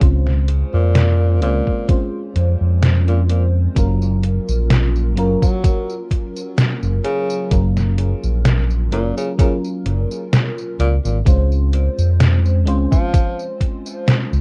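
A faded, dreamy vaporwave fragment opens with a breathy tenor saxophone, an FM electric piano with a soft pad layer, a fingered electric bass and a detuned 8-bit drum machine with an electronic kick, cut from a longer piece and set to a lightly swung groove. The saxophone carries the melody in a jazz style, its clear subtone colored by vibrato and scooped notes and trailed by tape echo, until it stops at 13.5 seconds. Beneath it, the electric piano shimmers through phaser, lush chorus and analog delay, detuned and mellow with fast-attack, decaying notes, while the dark, round, amped bass sits up front. The overdriven drum machine supplies hi-hat, a medium-tuned snare and tambourine with gritty 12-bit sampler texture, joined by a thumpy kick that drops out from 2.8 seconds until the chords shift at 3.8 seconds. The whole piece has the rough, dry feel of a home demo dubbed to cassette.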